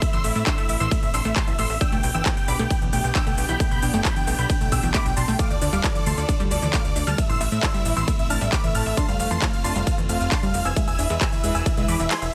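A huge, bright supersaw lead with sidechain pumping and tape echo carries the melody from the first second of this driving, bittersweet uplifting trance excerpt in A minor at 134 BPM, joined by a very quiet concert grand piano playing a second line and set over background strings, a lush unison pluck arpeggio with delay, a punchy, funky analog bass, crisp-hatted drums with handclaps, ride and shaker, and an up-front punchy kick that drops out at 12.1 seconds, all moving through Am, G, Dm, Am, F and E in a digital ambience.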